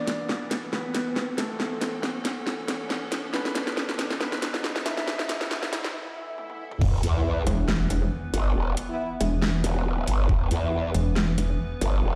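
A dark, mellow baby grand piano carries the melody from the start of this heavy wobble dubstep excerpt, its long-sustaining notes trailing a dub echo over a bright, morphing wavetable pad that pumps against the sidechain. Beneath them an electronic riser and swell sit in the background while the dubstep kit drives a build-up at 138 BPM in a half-time 4/4 swing, filling with a huge snare, metallic hats, toms and crash under a sweeping filter. The piano drops out at 5.9 seconds for a brief break, and at 6.8 seconds the track hits its chaotic drop with a sub impact and a knocking, tape-warm electronic kick. A growling, aggressive bass wobbles up front through a formant filter, saturated and overdriven, joined by a pulsing, detuned pluck wobble bass that pulses on a low E. Warm brass stabs with light vibrato punctuate the drop in a classical section style, echoing into the large, bare-room reverb that surrounds the whole heavy mix.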